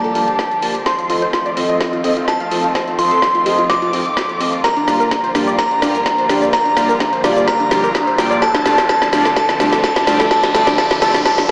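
A glassy, crystalline FM synth bell carries the melody with chorus, dub echo and a filter sweep through this dreamy, driving progressive house excerpt in G minor at 127 BPM, shadowed high up by a distant, very quiet violin section while a clear, biting string section holds pumping chords over Gm7, F7 and Dm7. A lush, detuned unison pluck spins arpeggios and a retro, glossy polysynth with 12-bit sampler grit fires stabs, both pumping and echoing. Up-front deep house drums with a woody snare, dark hats and shaker build through a fill over a very quiet overdriven kick, a background riser enters at 7.1 s, and the whole mix sits in a lush hall reverb with a stone-room, small-speaker character.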